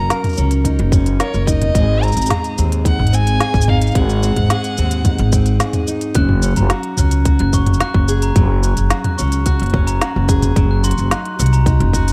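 Pastoral, delicate folktronica in which a rich, smooth bowed violin sings the melody with vibrato over bright, full-bodied fingerpicked steel-string guitar arpeggios, both carrying delay. A woody, thumpy pizzicato upright bass sits up front beside a tape-warm electronic kit of woody snare, crisp hats, shaker and toms, anchored by a tight electronic kick, all set in a small room ambience. The violin stops at 5.9 seconds, during a short break, and at 6.2 seconds a mellow, bell-like glockenspiel played with soft plastic mallets takes up a ringing second line with delay.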